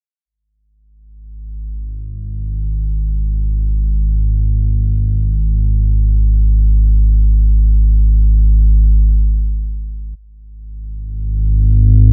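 The sound is dry and close, with little room around it, and a single analog drone sits up front. This is a short fragment of a longer ambient piece in free time, with an expansive, mysterious mood. The drone holds the bass, centred low on G#1, and enters at 1.4 seconds after a fade-in on the synth that begins at 0.2 seconds and runs to the end at 12.1 seconds. Its tone blends detuned sawtooth and pulse waves with a triangle, while pulse-width modulation and ring modulation keep the texture evolving. A slow attack, sustained body and long release, thickened by chorus, give the drone a warm, shifting weight.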